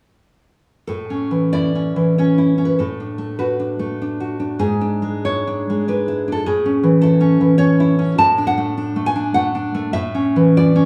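Bathed in a moderate, spacious studio reverb, this sunny, tender romantic excerpt for solo classical guitar drifts in a rubato 3/4, the up-front nylon-string guitar sounding full-bodied and fresh-stringed with deep classical resonance, fingerpicked with audible finger squeak as it moves through its harmonies from 0.9 to 10.9 seconds.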